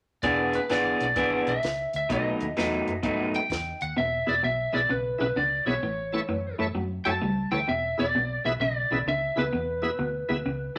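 Electric blues shuffle with a soulful, rollicking mood, this short excerpt is cut from a longer piece and swings with a triplet feel. A lightly driven lead guitar carries the melody up front, its tone slightly broken-up, compressed and twangy, while a second electric guitar through a small old amp plays the riff with a bright, lo-fi bite. Underneath, a vintage muted fingered bass sits dark and round, foam-muted, and a compact cocktail drum kit with a high-tuned snare and punchy kick keeps time dryly until it stops at 3.9 seconds. At 4.3 seconds a bright tonewheel organ enters as accompaniment, full and shouting, lightly overdriven, with key click, chorus vibrato and a slow rotary speaker. The harmony moves from E7 and B7 in the opening stretch to E, A and back to E in the second, all set in a moderate studio reverb.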